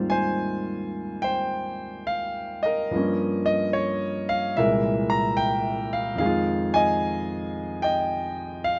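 A clear concert grand piano opens alone on a rich Abmaj13 chord, setting a sophisticated, warm mood for this short solo jazz excerpt in Ab major. The tempo sits around 73 BPM in 4/4 with a lilting swing on the eighth notes, yet the time breathes freely in a rubato manner. Over just under nine seconds the harmony moves from Abmaj13 to Gm7b5 at 2.9 seconds, then through C7b13 to Fm9 at 6.2 seconds. The piano spans from a deep bass in the low register up to the upper register, sounding clear, natural and up front in the mix. A moderate studio reverb gives the instrument a touch of room around it, and the fragment feels lifted from a longer piece.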